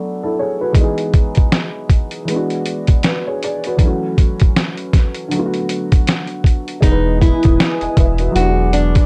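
Dreamy and cosy, this short lo-fi hip hop cut from a longer piece sits at 79 BPM in E major with a 16th-note swing. A dark upright piano opens alone, its mellow, slightly detuned tone colored by cassette tape and a low-pass filter, with audible action noise that makes it feel intimate, as chords move through D6, Emaj7, E9 and A6. At 0.7 seconds a compressed, pitched-down sampler-style drum kit arrives up front with a thumpy kick, a medium-tuned snare and hi-hat. At 6.8 seconds the arrangement fills out: a fingerpicked nylon-string guitar carries a small melody with fresh strings, a round, deep dub sub bass holds the low end, and a hollow, flute-like pad with chorus drifts airily in the background. The whole piece is dry and gritty, a hardware recording on cassette tape with little reverb.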